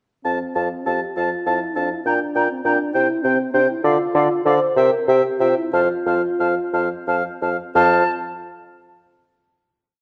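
In a 6/8 felt at 58-68 dotted-quarter beats and shaped with rubato, this short, complete classical-period movement for wind quintet moves quickly and sounds graceful and lively in F major. The concert flute carries the melody with an airy, expressive tone, tongued repeated notes and vibrato, set slightly distant in the blend. The oboe supplies a second line from 0.3 s, up front, with light vibrato and its own repeated notes. The dark French horn, with its smooth top, fills out the accompaniment, while the clarinet, sitting in the background with a warm tone, adds sustained chords. The mellow, vintage-sounding bassoon anchors the bass up front with repeated bass notes and light vibrato. The harmony moves through F, Gm/Bb, C and Dm before settling onto a final chord at 7.8 s, all in a moderate recital hall and a dark, warm production.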